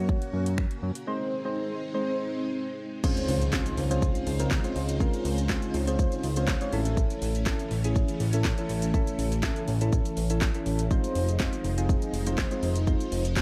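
Dark, lightly reverberant digital ambience frames this summery, euphoric dance-pop passage, cut from a longer piece, where a fat, detuned, saturated analog bass and a punchy, layered house drum kit with cracking snare, metallic hats, finger snaps, shaker and crash sit up front. Soft, round electric-piano-like synth keys with chorus and phaser, and a lush vintage string machine with ensemble chorus and long-release sustained chords, pump with sidechain compression along with the bass. A very quiet electronic impact marks the shift into the second section at 3.0 seconds, and a distant, crisp group handclap from a large room joins faintly at 3.5 seconds.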